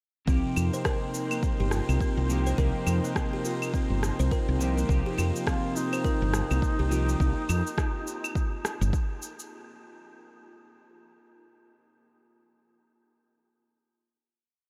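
A round, dark fretless bass anchors this hypnotic organic downtempo groove at 104 BPM in C minor with a syncopated riff over an overdriven deep electronic kick and a tape-warm layer of cabasa, claves and rim click, while a clean electric guitar holds quartal chords with syncopated pushes, a buzzing kalimba loops a 12-step arpeggio that drifts against the bar, a detuned, breathy pad pumps softly on a sustained Cm7, and a mellow, distant duduk enters at 5.5 seconds with motif-based call phrases.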